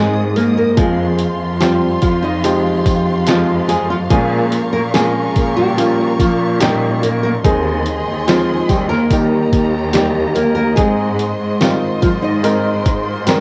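Tender and hopeful, this short pop ballad section in Ab major moves at a gentle 72 BPM in straight 4/4, with a fingerpicked, full-bodied nylon-string guitar carrying the melody over a clear concert grand piano with deep bass and a rich, bowed cello section holding the low end. A distant, lush string section adds sustained chords with vibrato and portamento. From 0.4 seconds a muffled, pitched-down sampler-style drum kit with a thumpy kick and overdriven grit sits up front, while a jingly tambourine stays close and dry in the background, all within a small room's cassette home-recording sound.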